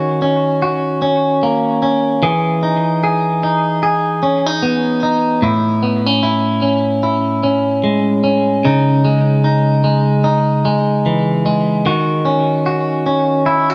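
A clean electric guitar opens the recording and carries it throughout this 13.7-second fragment of a longer indie pop piece. The mood is hazy and wistful at a slow 75 BPM in 4/4, with a gentle swing on the sixteenth notes. Picked and compressed, the guitar sounds twangy and scooped, sitting up front in the mix. A warbly pitch drift and a digital delay give its tone a wavering, dreamlike quality, and it moves through a register from A2 to G#4. The harmony cycles through D#m7, Emaj7, Amaj7 and C#madd9 before returning to D#m7 at 11.9 seconds, all within a moderate stone room reverb that suggests a live performance in a single space.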